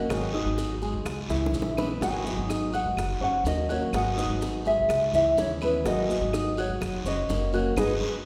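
Sultry and nostalgic, this short excerpt of Cuban son and guajira at 125 BPM in G# minor sets a thumb-plucked nylon-string guitar melody over a bright, squeaky fingerpicked archtop, arpeggios from a deep, long-sustaining grand piano, and a dark, thumpy pizzicato upright bass, while tight high-tuned bongos, woody claves, a raspy distant guiro and grainy maracas sit back in a church-like reverb, with a drum fill at 1.3 seconds and a band accent closing at 7.8 seconds.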